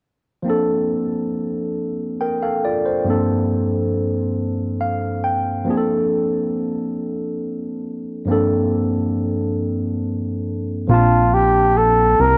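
Bathed in a moderate plate reverb, this intimate R&B excerpt in 6/8 at 46 BPM in Bb major rests on a barky, lightly overdriven tine electric piano with subtle chorus, which moves between Bbmaj9 and Gm11 and adds a fill at 4.4 seconds, until a mellow, smooth-topped flugelhorn melody and a fat, saturated analog bass both enter at 10.9 seconds.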